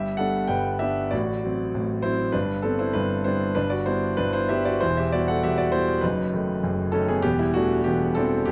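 A clear grand piano sits up front and plays alone for the whole 8.5 seconds, its sound intimate and natural, with long sustain and audible action noise from the instrument itself. This is a romantic classical character piece in G major, taken from a longer work, moving at 98 BPM in 4/4 with a flexible, rubato feel. The harmony opens on G, passes through F#dim/A and back to G, then turns toward Em at 4.8 seconds before D#dim/F# leads to a closing Em7. The writing spans a broad register, from a deep E1 up to G5. Light reverb and a dark, warm production frame the piano, giving the passage a hopeful, warm mood.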